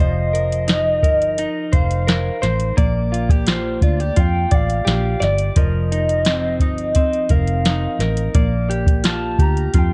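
Over a soft vintage rhythm box with a deep kick, crisp snare and metallic hats, sitting dry and up front with 12-bit grit from 0.3 s, this sunny, hazy bedroom-pop excerpt in Bb major moves at 86 BPM in a straight 4/4, with a round, foam-muted fingered bass, a bright, compressed clean guitar picked direct with subtle chorus and a warbly pitch drift, and a hollow, woody clarinet-like synth lead carrying the melody through phaser, lush chorus and analog delay over alternating F7sus4 and Bb6 chords in a digital ambience.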